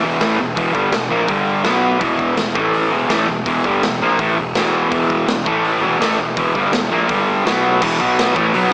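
A double-tracked fuzz guitar sits up front in this rowdy, swaggering garage rock excerpt, its compressed, distorted riff running from E2 to B3 for the full 8.7 seconds. Underneath, a growly, overdriven electric bass plays in the low register between E1 and B1, bright and direct with an amped edge. A raw acoustic drum kit enters at 0.2 seconds, its punchy kick, medium-tuned snare, hi-hat and crash cymbal sounding saturated and gritty inside a bright stone room that pumps. The tempo is a driving 166 BPM in straight 4/4, with power chords cycling among E5, G5, B5 and A5, returning often to E5 before closing on B5. A moderate spring reverb and small-speaker tone lend the whole cut its studio-ambience character.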